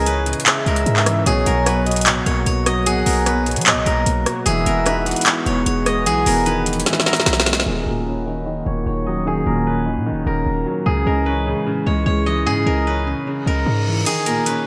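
Eerie and melancholic, this half-time trap excerpt at 150 BPM in Eb phrygian sets a bright, silvery steel-string zither melody, played with fingerpicks through delay and a low-pass filter, over a clear baby grand piano with lush chorus, a smooth, warbling analog pad and a punchy, heavy 808-style bass, while a breathy, flute-like synth lead adds a soft second line with vibrato until 7.6 seconds. A trap kit with a woody snare, metallic hats, handclaps and rim clicks drives up front under gated reverb, dropping out after a fill ending at 7.7 seconds as a filter sweep carries the second section. A reverse cymbal and downlifter then lead into a closing Eb7(no3) chord at 14.1 seconds, where the kit briefly returns. The bright 1980s-style digital production sits in a lush hall reverb.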